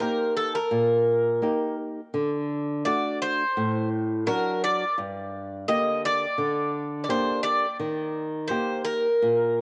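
Greek folk music at 85 BPM in a straight 4/4, this short passage cut from a longer piece carries a cool, bittersweet mood. A Greek bouzouki takes the melody from 0.0 to 9.6 seconds, its picked double strings sounding bright and metallic, some of them octave-doubled. Beneath it, a small, fingerpicked nylon-string guitar supplies the accompaniment across the same span, a little lower in level than the bouzouki. Both instruments sit up front and share a cassette tape character, and a moderate spring reverb with a 2.4-second decay lends the home recording a modest sense of space. The harmony moves from Eb to D, settles on G minor at 5.0 seconds, and returns to Eb near the close.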